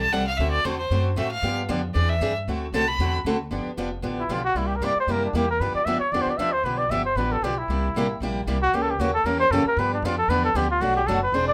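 A swinging 4/4 pulse drives this playful cut from a longer jazz manouche piece, with a boxy, fresh-stringed picked steel-string acoustic guitar and a woody, dark, thumpy pizzicato upright bass carrying the accompaniment throughout in a moderate small room. A clear, nasal bowed violin with light vibrato and an airy, intense tone takes the opening solo until 3.1 seconds. At 4.2 seconds a warm flugelhorn enters up front with a soft attack, vibrato and scooped notes to carry the melody over changes rich in seventh chords.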